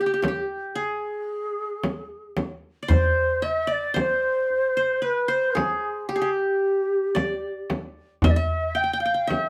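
This Turkish makam ensemble piece, cut from a longer work, carries a soulful, longing mood over a straight 10/8 metre. A low ney leads the melody from the start, its end-blown reed-cane tone airy and tongued, shaded with vibrato. Alongside it, a qanun plays a second line in the same register, its triple strings plucked with fingerpicks for a bright-edged sound placed up front. At 0.2 seconds the percussion joins: a metal-shelled darbuka with a crisp, large sound in a small-room setting, and a frame drum that sounds deep, close and dry. A moderate studio reverb gives the ensemble a sense of space through the single section that runs to 9.5 seconds.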